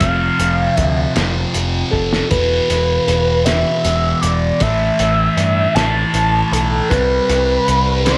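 Dark and mysterious, this brief excerpt of slow psychedelic rock in E phrygian at 52 BPM in a straight 6/8 sets a screaming, sawtooth-edged synth lead with distortion, chorus, vibrato and slapback echo over a double-tracked fuzz guitar riff run through phaser, a round, growling overdriven picked bass and a muffled, cloth-damped drum kit with a fat snare and tight kick that plays a fill at 1.9 seconds, all sitting in moderate spring reverb and small room ambience as the chords move from F5 to E5, A5 and C5.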